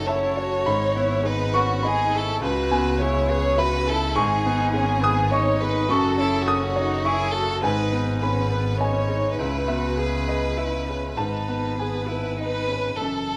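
A violin section, cello, upright piano and double bass begin together in this reflective, longing neoclassical piece, which moves in a rubato 3/4 at about 103 BPM over a repeating cycle of F#m7, G#m and C#m7. The focused, up-front violins carry the melody with vibrato, while a single expressive cello weaves a second line with soft attacks and portamento beneath them. A clear, woody upright piano with long sustain provides the accompaniment, and a dark, intimate double bass bowed sul tasto with an airy tone anchors the low end, all set in a moderate large-studio reverb.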